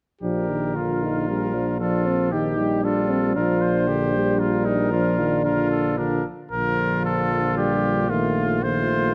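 Closely miked with light reverb, this triumphant classical brass quintet excerpt in 3/4 at 114 BPM in Bb major sets two clear trumpets with light vibrato, one carrying the melody and the other a soft-attacked, smooth-topped second line, over a mellow, distant French horn and a warm trombone with vibrato in the accompaniment, while a roomy tuba holds the bass on Bb1 and the harmony moves between Bb and F7/Bb through an opening section and a second one from 6.5 seconds.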